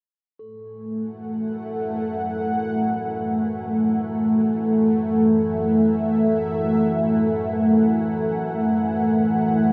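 An up-front, full-bodied resonant pad dominates this dark ambient drone, holding sustained chords from 0.4 seconds with a detuned sawtooth edge, a sub-octave underneath, slow attack and a chorus that keeps its evolving tone in motion. At 1.3 seconds a calm, organ-like drone fades in below it, a vintage, warbling sine tone built from detuned unison voices, softened by ensemble chorus and its own reverb and held with a long release. Very quietly in the background, a bronze singing bowl struck with a suede striker rings with a metallic, meditative shimmer and slow beating. The whole piece sits in a huge, wet reverb that places the sound in a vast, echoing space, giving it a cavernous, dark mood. It is cut from a longer piece and runs until 9.7 seconds.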